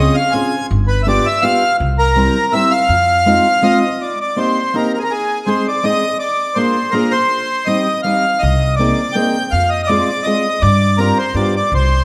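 Bathed in a reverberant recital-hall ambience, this bittersweet, nostalgic musette waltz fragment sways with a rubato feel as a reedy, full accordion carries the melody up front over fingerpicked steel-string acoustic guitar accompaniment and a woody, growly pizzicato upright bass that drops out at 3.4 seconds and returns at 8.4 seconds, with a new section beginning at 4.0 seconds.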